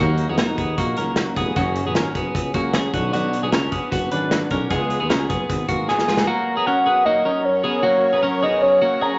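A straight 4/4 pulse from a loose, punchy indie drum kit drives this nostalgic, breezy jangly indie pop fragment, where a fingerpicked jumbo acoustic guitar and a mellow tuba bass with vibrato play alongside clean, compressed twelve-string electric arpeggios that run throughout; as a drum fill begins at 5.9 seconds, a round, octave-layered synth lead with chorus takes the melody, and a vintage, organ-like string ensemble holds soft chords from 6.3 seconds, the whole mix sitting in a large studio reverb with vinyl crackle.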